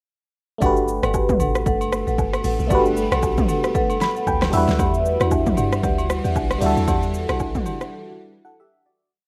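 This rough home demo mix sits in a digital ambience, a short, relaxed amapiano piece that opens straight into its drop at 0.6 seconds with a lilting, swung sixteenth-note feel. The overdriven deep house drum kit sits up front with a punchy kick, a fat snare and layered electronic hits, carrying a steady shaker and syncopated rim clicks. Beneath it, the deep log drum bass fires round, dark, syncopated bursts with slides, while the marimba with medium hard mallets adds short, smooth stabs through a digital delay. A barking FM electric piano holds biting, phased chords in a drop2 voicing, moving from Gmaj9 to Em9 and slipping in a short fill at 3.7 seconds. A granular cloud pad drifts in soon after with blurred, evolving, detuned chords washed in its own reverb, and acoustic agogo bells and woodblock tap out a close timeline in the background. The groove fades out and gives way to a brief break at 7.9 seconds, where the electric piano and pad ring on alone to close the piece.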